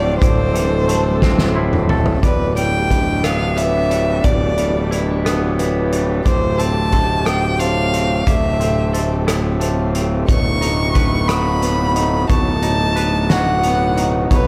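A clear, close violin carries the melody up front through delay in this melancholic, cathartic post-rock excerpt in 6/8, over a growly fuzz bass, two background electric guitars playing delayed arpeggios (one clean with phaser, the other twangy), a very quiet, lush studio string section holding sustained chords, and a loose indie drum kit with a fat snare and punchy kick that enters at 0.2 seconds and plays a fill from 1.2 to 2.2 seconds, all moving through Am7/D, Em7/D and B7/D in a small room with light reverb.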